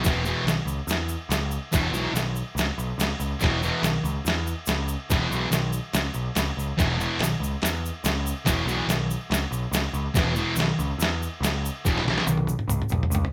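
The recording has the raw sound of a band playing live in one room, with moderate studio reverb giving the short take a little air. It is a rowdy, swaggering slice of garage rock at 142 BPM in a straight 4/4, cut from a longer piece and built on an E5 chord. Up front, a thick, double-tracked fuzz guitar carries the picked riff with a bright, distorted edge. Just as forward, a growling picked electric bass adds overdriven, direct-and-amped grit in the low end. The lo-fi, sampler-style drum kit sounds compressed, pitched down and muffled, with a thumpy kick, a medium-tuned snare, toms and crash cymbal, while a grainy tube shaker adds close, dry acoustic texture at a lower level. The drums play a fill from 11.8 to 13.3 seconds, and the guitar stops at 12.2 seconds.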